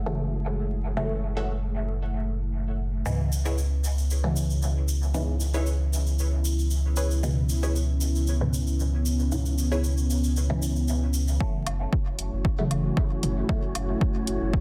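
A dark, detuned analog pad with a filter sweep and a round sub bass open this deep, meditative dub techno excerpt in F# minor at 115 BPM, joined by muted, phaser-washed dub chord stabs with echo, a crisp, wave-folded digital riff, and a grainy, distant shaker, before an overdriven kick enters at 11.4 seconds alongside hi-hat, echoing woodblock and toms, and a breathy, wind-like noise texture, with the pad, bass, stabs, riff, texture, woodblock and toms pumping under sidechain over a dense, limited mix with vinyl crackle.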